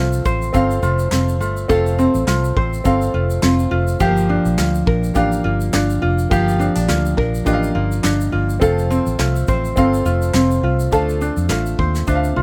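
Acoustic pop in G minor at 104 BPM, this wistful, reflective excerpt moves with a light swing on the sixteenths and is cut from a longer piece. A fingerpicked ukulele sits up front alongside a dark, round, foam-muted vintage electric bass with a punchy, amped tone, both carrying the accompaniment and low end through the whole stretch. Behind them, a warm baby grand piano with short sustain adds natural accompaniment, while a classical nylon-string guitar plays fingerpicked arpeggios in the background, its finger squeaks audible. A soft brush drum kit with a tight kick, medium-tuned snare and shaker enters at 0.1 seconds, and a hollow, very quiet group handclap joins at 1.1 seconds. The harmony moves from F to Gm7, back to F, and on to Dm7, all captured with close, detailed microphones and little reverb for an intimate, dry sound.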